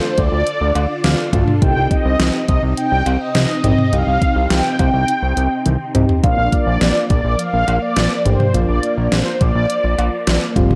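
A mellow, brassy synth lead carries the melody up front in this upbeat, nostalgic synth-pop excerpt at 104 BPM in Bb major, its dark, detuned sawtooth tone shaded with chorus, vibrato and slapback echo. Soft, gentle electric-piano-like keys add a fill from 0.8 to 1.6 seconds over a swirling, vintage string machine with phaser in the background. A fat analog bass and an overdriven, up-front pop drum kit with knocking kick, deep snare, hi-hat, cowbell and toms enter at 0.2 seconds, the drums playing a fill at 5.7 seconds, and lush hall reverb gives a big arena sound as the chords move from Dm to Cm to Bb.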